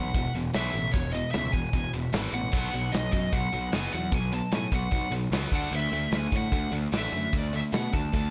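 The recording is dry and close, with little reverb, in a brief cut from a longer punk rock piece that runs at 150 BPM in 4/4 with a straight, rowdy, energetic feel in E major. A tight, bright, distorted electric guitar drives the riff from low E2 up to D4, moving through E5 and B5 power chords before landing on D at 5.5 seconds. Beneath it, a fuzz-laden picked electric bass sits up front with a growly, punchy, overdriven tone, running from E1 to B2. A loose indie acoustic drum kit enters at 0.1 seconds, recorded in a small room, with a medium-tuned snare, a firm kick, hi-hat and crash cymbal, and it sounds both smooth and close to the listener. Over the top, a shadowy, mellow lead guitar carries the melody between C#5 and A5, its picked lines colored by overdrive and digital delay.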